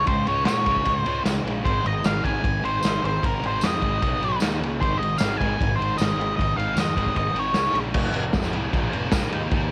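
The octave-fuzz lead guitar stands out first, a dark, distorted picked line sitting up front and carrying the melody until about 7.8 seconds, its sound roughened by cassette tape. This is a menacing, swaggering garage rock cut at 152 BPM in a straight 4/4, lifted from a longer piece and moving through chords built on Db5, Ab, B5, Eb5 and Ab5 before shifting to F5 and Bb5 in its final stretch from 8.0 seconds. Behind the lead, a thick, double-tracked fuzz guitar grinds out a bright riff in the background, while a fingered electric bass, overdriven and fuzzy, anchors the low end. The raw drum kit sits up front with crash, ride, a tight kick and a medium-tuned snare, its tape-saturated, gritty tone rolled off at the top and set in a stone-room ambience, and a jingly, compressed tambourine adds a faint shimmer from 0.5 seconds. A moderate spring reverb and small-room sound give the whole home cassette recording a lo-fi punch.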